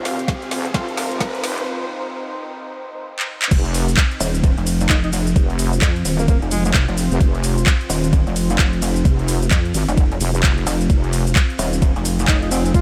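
Bouncy and swaggering, this bass house excerpt rides a swung 130 BPM groove in F minor. It opens in a build-up, with a background riser and a very quiet, airy, breathy pad over a deep, moody ambient pad that holds sustained chords throughout, while a heavy, wobbling square-and-sine bass pumps up front, and a brief nasal, band-passed chord stab flickers at 0.7 seconds. A garage drum kit with a woody snare, metallic hats, handclaps, shaker, ride and crash cymbals joins alongside an overdriven, knocking electronic kick, with drum fills, a filter sweep and a short break leading into the drop at 3.5 seconds. There, a saturated, pulsing pluck wobble bass enters at 4.2 seconds, thickening the low end with chorus and sidechain pumping. A clear alto saxophone with vibrato and a smooth top sings a brief solo line in the background through analog delay, returning just before the cut, all set in a light digital ambience.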